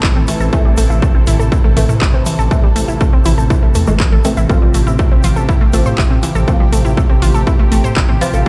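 A large studio reverb frames this melancholic, dramatic melodic techno excerpt, which sounds as if played on a big sound system in a bare room, moving at 121 BPM in 4/4 with a straight feel in A minor. An overdriven, heavy electronic kick sits up front, joined by a layered techno kit of handclaps, hi-hat and toms with overdrive and sidechain pumping on its toms, cymbals and hats, while a grainy acoustic egg shaker stays close but in the background. From 0.2 seconds a menacing, detuned sawtooth bass with a filter swell holds the low end, pumping against the kick. A punchy, wave-folded unison pluck runs arpeggios up to C6 through cassette tape colour, delay and sidechain pumping, over a muted, dark dub chord stab with a moving notch, phaser, ensemble chorus and delay. Behind them a thick, bright unison pad with slow attack, chorus and phaser sustains the chords, and a very quiet, resonant drone with moving overtones lingers underneath. 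The harmony shifts from Am to Fsus2/A at 4.5 seconds.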